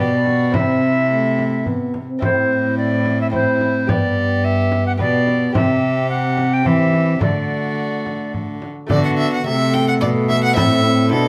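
A stately, courtly renaissance-style consort dance in 3/4 at 108 BPM, in D mixolydian, features a single bowed violin of gut-string, period-style tone carrying the melody. Alongside it play a tenor recorder's pure, softly chiffing second line, a dark trombone with light vibrato, a delicate fingerpicked lute in the background, and an up-front cello of rich, reedy depth on the bass. A small, bright frame drum joins at 0.3 s as the chords move through G, C, Am and D in this passage cut from a longer piece, all captured by close, detailed microphones in a moderate stone room whose reverb lasts 1.4 s.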